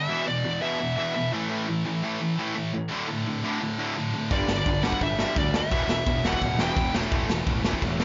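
This rowdy, upbeat punk rock excerpt at 171 BPM opens with three bright, picked distorted and high-gain rhythm guitars (one double-tracked) churning a low riff through E5, A5, D5 and G5, while a smooth overdriven lead guitar with digital delay sings a short high melody; at 4.3 seconds a growly fuzz bass and an up-front, gritty garage drum kit with a punchy kick, a medium-tuned snare, crash cymbal and a pumping small-room sound crash in, all in a dry, dark-topped mix.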